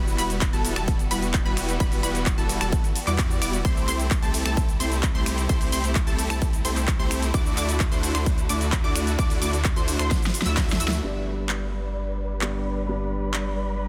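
This excerpt has a dense, heavily limited modern master set in a digital ambience, and it brings the uplifting, anthemic rush of festival progressive house in a straight 4/4. It opens on the drop, where huge, airy supersaw chords carry the riff through Emadd9, C6 and Dadd9 over a deep, thick sub bass with triangle-wave saturation. In the background, a lush, wave-folded unison pluck plays arpeggios through analog chorus and delay, and a clear studio string section holds sustained chords with vibrato through a low-pass filter; sidechain pumping runs through the strings, pluck, supersaw and bass. Up front, a punchy, overdriven electronic kick drives the groove, while a big-room kit adds a huge snare, handclaps, finger snaps, hi-hat and shaker, both drum parts carrying overdrive and studio reverb. A drum fill arrives at 10.1 seconds, and at 11.0 seconds the supersaw and pluck drop away as a felt-muted upright piano enters on G. 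The piano is mellow and intimate, with audible action noise, a boxy tone, delay and its own sidechain pumping.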